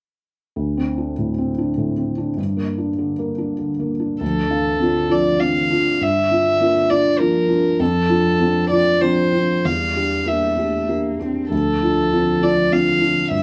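Neoclassical piano and strings in D minor, this reflective, melancholic fragment moves at 99 BPM in a rubato 3/4. A felt-muted upright piano sits up front with a soft, mellow, vintage tone and audible action noise, playing accompaniment alone from 0.6 s. At 4.2 s a single violin, pure and floating with sul tasto bowing, takes the melody, while a dark, close cello with vibrato and an airy bow carries a second line in the background, all set in a moderate studio reverb that suggests players sharing one room.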